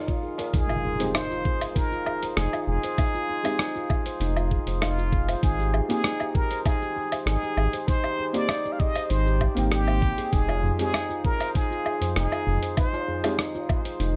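Organic downtempo in F minor at 98 BPM, this excerpt from a longer piece has a mystical, hypnotic mood, moving through Fm7, Abmaj7 and back to Fm7 in a straight 4/4. A plunger-muted trumpet carries the melody from the start with a bright, close-miked wah-wah tone and a touch of delay, while a stainless-steel handpan, played with the fingertips, rings out meditative arpeggios through digital delay. Underneath, a gritty, tape-warm sampler-style kit of cabasa, hi-hat, rim click and woodblock sits in studio reverb beside a thumpy electronic kick placed up front, with low-tuned, ringing tabla appearing briefly at the opening and again from 10.5 s. An electronic impact marks the first few seconds, and a felt-muted upright piano enters at 1.0 s with soft, intimate accompaniment roughened by vintage 12-bit grit, sidechain pumping and delay. A round, deep analog bass arrives at 2.4 s, dark and sustained with its own sidechain pumping, all held together in a small room with light reverb.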